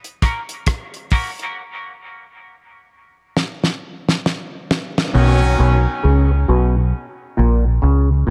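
Light reverb and a small room ambience frame this spacious, hazy dub reggae cut at 67 BPM in B major, swung on the sixteenths. A damped 70s drum kit, dry and up front with a fat snare and tight kick, carries an opening break on hi-hat, kick, rim click and snare with a fill from 3.4 s, while a clean, compressed semi-hollow electric guitar briefly adds a chorused, echoed figure over F#. At 5.1 s the drums drop out and an overdriven, stringy clav riff enters through phaser and dub echo; a round, punchy fingered electric bass joins it, and a smooth-topped horn section with light vibrato adds a short echoed second line over B before the harmony moves to A#m.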